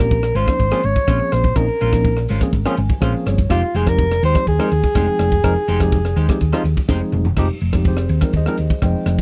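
A straight 4/4 groove drives this funky, intense slice of electric jazz fusion, cut from a longer piece, with a crisp drum kit entering at 0.1 seconds on punchy kick, high-tuned snare, rim clicks, ride, crash and toms in a small, pumping room, sitting up front. Beneath it, a dark, round hollow-body short-scale bass played with the fingers holds the low end with an amped, punchy tone, and the harmony moves from Bbm9 to Fm9 at 3.5 seconds. A breathy soprano saxophone carries the melody up front in a mellow, whispered subtone with a soft attack and intimate jazz phrasing, stopping at 6.9 seconds. A clean tine electric piano heard through its built-in speakers supplies accompaniment and a short fill, while a warm, picked electric guitar with subtle chorus adds quiet stabs until 7.2 seconds. A drum fill leads into a brief closing section where bass, electric piano and drums carry on in a dry mix with little reverb.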